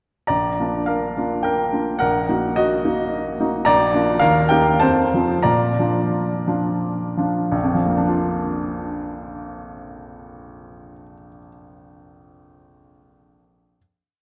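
A clear, polished baby grand piano carries this brief romantic character piece alone, singing a tune in sixths over syncopated chords in a three-beat metre with a rubato feel. The mood is passionate and warm, with the harmony moving from Bb through a darker Ebm/Bb colour and back before slowing between 2.8 and 7.5 seconds into a final chord that rings until 11.6 seconds. A dark production and a wet church reverb surround the up-front piano with a long, spacious halo.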